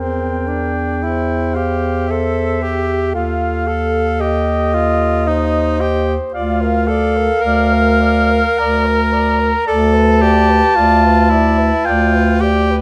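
A soft-attacked clarinet with a smooth top carries the lyrical melody in this serene classical passage for single-reed quartet. It unfolds in an unhurried, rubato three-beat feel. Close-miked and set in the background, a clear alto saxophone sings a second line, while an up-front tenor saxophone with vibrato supplies the accompaniment and a mellow, distant-sounding bass clarinet anchors the low end. Light reverb surrounds the ensemble, and the clarinet falls silent at 12.4 seconds as the other three voices continue to the close of this fragment of a longer piece at 12.8 seconds.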